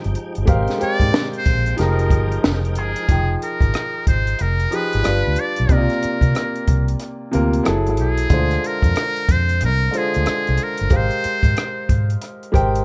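A swung 16th-note groove at 92 BPM in 4/4 sets up this introspective, late-night neo-soul and R&B excerpt in F dorian: a compact cocktail drum kit with a dark, punchy kick and high-tuned snare, and a round, foam-muted electric bass sitting up front. A clear concert grand piano with deep bass and long sustain provides accompaniment over chords such as Abmaj13, Fm11 and Gbm9, while a full tonewheel organ with fast rotary speaker and chorus vibrato holds sustained chords only until 3.1 seconds. From 0.8 seconds, a buzzy, breathy trumpet with metal mute takes the solo melody in jazz style, with scooped notes, light vibrato and slapback echo, all in light reverb.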